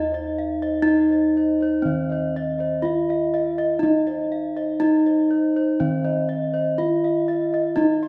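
An up-front, ringing bronze metallophone struck with a wooden mallet carries the melody in this serene, shimmering Javanese gamelan passage at 61 BPM, while a second metallophone and dark, mellow bossed gongs on padded beaters play higher arpeggios and boxy, round bossed gongs hold the bass, the ensemble set in a moderate recital-hall reverb.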